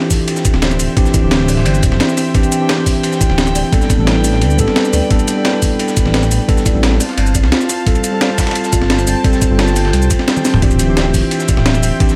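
A straight 4/4 groove at 174 BPM drives this rolling, lush liquid drum and bass passage in D minor, cut from a longer piece. An up-front, thumpy electronic kick anchors a gritty, pitched-up breakbeat kit of hi-hat, shaker, snare and toms. Meanwhile, a dusty soul kit with overdriven ride, hats and snare, thinned by high-pass filtering, sits in the background. A menacing, detuned saw bass, saturated and up front, enters at 0.5 seconds and evolves through a filter swell in the low register. A mellow tine electric piano carries the harmony through tape echo, moving from D9sus4 to A9sus4 and G9sus4 before returning to D9sus4. Above it, a distant, floating chamber string section holds soft bowed chords with sidechain pumping. A woody, hollow kalimba rings out arpeggios through dub echo in the background, and a drum fill lands at 10.4 seconds, all within light reverb.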